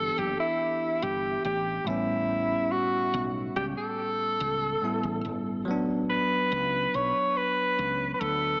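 A straight 4/4 pulse at 71 BPM carries this late-night, sensual contemporary R&B fragment, where an up-front alto saxophone sings the melody with vibrato and subtone through a diffuse ambient delay, a bell-like tine electric piano adds clean, bright accompaniment, and a round, woody fretless bass with analog chorus anchors the Em7, A9 and D6/A changes, the dreamy mix soaked in a lush 2.6-second hall reverb with a small-speaker sound.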